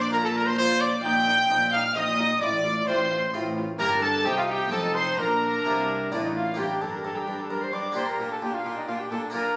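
Festive and brilliant, this short cut from a longer baroque-style concerto movement in Bb major moves at 130 BPM in a straight 3/4, with a clear, up-front solo trumpet carrying the melody alongside a high, reedy violin section in period style, a second violin line set further back, a bright single-strung harpsichord, a gut-toned viola section, a dark cello section and a rich double bass section that drops out at 6.6 seconds as the music turns toward G minor, all heard through the wet bloom of a recital hall captured on a phone in the room.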